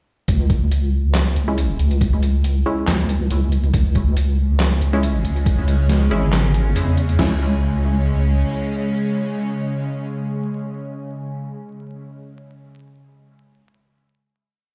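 A half-time groove with lightly swung sixteenths drives this cavernous, brooding deep dubstep piece, built from two muffled, overdriven, pitched-down sampler-style drum kits (one with a thumpy kick, snare and crash, the other with hi-hat, snare and handclaps) beneath an up-front, dark wobble bass with chorus and changing wobble speed. Sparse, muted chord stabs with chorus and dub echo enter at 1.5 s, moving one shape in parallel, and at 4.4 s a bright, tense string-like drone with phaser and vibrato joins as a sustained pad. The drop runs until 7.2 s, when the drums stop and a final chord rings out, with stone room reverb and vinyl crackle colouring the mix.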